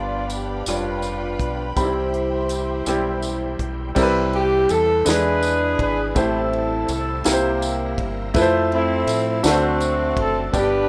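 This soulful, uplifting slow gospel excerpt in 6/8 opens with punchy, up-front horns carrying the melody over a clear, intimate baby grand with audible action noise and plate reverb, a very quiet, lightly overdriven tonewheel organ with key click and slow rotary, lush bowed strings in the background that stop at 3.9 seconds, and a deep, round fingered electric bass, while a crisp acoustic drum kit with bright cymbals and a high-tuned snare enters alongside a jingly tambourine at 0.3 seconds, all in a rough home-demo mix with moderate studio reverb as the harmony moves through seventh chords.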